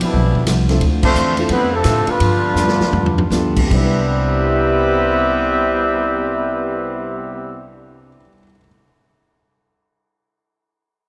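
A brassy, swinging big band passage opens with a warm trumpet section up front carrying the melody over a brilliant trombone section with light vibrato, a woody, thumpy pizzicato upright bass, a punchy swinging drum kit and a bright picked steel-string acoustic guitar in the background. A clear, intimate grand piano with audible action noise joins at 0.7 seconds as the band slows down, striking an ensemble accent at 1.0 seconds before a drum fill leads into a new section at 3.7 seconds. A moderate concert hall reverb gives the whole ensemble a roomy sense of space.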